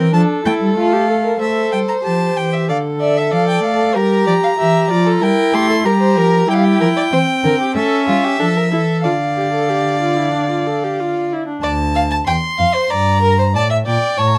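A focused, smooth-topped single violin carries the melody up front in this solemn, serious baroque-style fugue for string quartet, singing with vibrato between D5 and C6. Beneath it, a second violin with a rich tone weaves an expressive line marked by vibrato and portamento. A dark viola fills in the accompaniment and falls away at 11.6 s. A woody cello anchors the bass with a soft attack and sliding portamento. At a steady 94 BPM in a straight 4/4, the harmony moves from F through Am7, Gm7 and C7 before settling into D minor at 6.5 s, then closing on a rootless Em7b5/G. The close, detailed sound carries little reverb, and this passage, cut from a longer piece, ends at 14.4 s.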